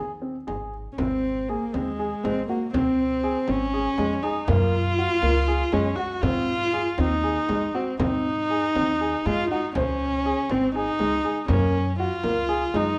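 A dark, mellow grand piano opens with short-sustained arpeggios alongside a woody pizzicato upright bass, setting up a playful, hopeful piece of contemporary chamber music in 7/8 at 240 eighth-note beats per minute, with a straight feel in Ab mixolydian. A deep, large frame drum joins at 0.5 seconds, sitting in the background with a small-room character. At 0.9 seconds a single viola enters as the second line, played bowed and sul tasto with light vibrato, a soft attack and an airy tone. The viola sits close and up front, giving the passage an intimate focus over the piano and bass. The harmony moves among Ab, Dbmaj7(no3), Gbmaj9 and Dbsus2, all set in a moderate scoring-stage reverb. This is a short cut from a longer work.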